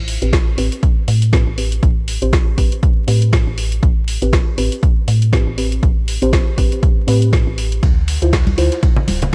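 A smooth, late-night deep house excerpt in A minor at 120 BPM, swung on the sixteenths, moving from Am7 to Dm7 at 7.8 seconds. A woody, round FM bass pumps against an up-front, punchy, tape-warm electronic kick, while a layered kit adds a woody snare and dark hi-hats with a small-room character. Deep, full-bodied chord stabs with a nasal edge sit in the middle register, coloured by chorus, cassette-tape grit and delay, with a filter sweep running across them throughout. Late in the clip a gritty, overdriven sampler-style kit slips in faintly with ride cymbal and snare, and bright, damped congas played with hard hands join at 8.5 seconds. Vinyl crackle and a dry, close sound give the track a dusty, intimate feel.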